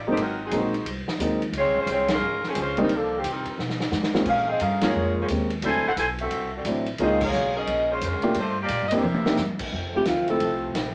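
A dark, woody pizzicato upright bass opens this brassy, swinging big band jazz excerpt, joined almost at once by a vibrato-rich saxophone section carrying the melody, a short-sustained grand piano in accompaniment, and a punchy, natural-sounding drum kit in a big room. The drums, with ride, hi-hat, snare, kick, crash and toms, add drum fills, and the band hits several accents. At 9.7 s a clear trombone section enters in the background with sustained chords, and at 10.0 s a warm alto saxophone with subtone and scooped notes steps up front for a brief solo, set in moderate studio reverb.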